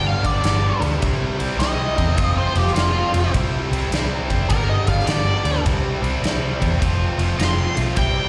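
Swung eighth notes in 4/4 drive this short, gritty cut from a longer blues rock and southern rock power-trio piece, raunchy in mood throughout. A big acoustic rock kit enters at 0.2 s with a punchy kick, a medium-tuned snare and a bright ride cymbal, while a round, foam-muted vintage fingered bass, amped and dark, holds down the low end. An overdriven, double-tracked rhythm guitar sits up front with a picked riff touched by slapback echo. Above it, an octave-fuzz lead guitar carries the melody through wah, distortion and its own slapback echo, its picked tone shadowy and fuzzed. The harmony moves through G, C and F, and the sound is that of a live gig heard through the venue's PA, with small room ambience and recital hall reverb.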